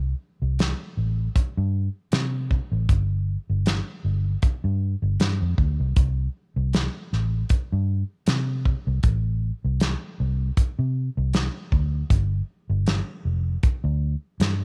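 A straight-eighth soul blues groove in 4/4 at 78 BPM, with a faint swing on the sixteenths, sets a smoky, mournful mood in this short fragment of a longer piece. A vintage electric bass, dark, round and foam-muted with a punchy amped tone, opens alone, and the drum kit joins at 0.6 seconds with hi-hat, a tight kick and a medium-tuned snare, its warm small-room sound rolled off at the top. Both parts sit up front in a dry, close mix, tuned to A4 = 439 Hz.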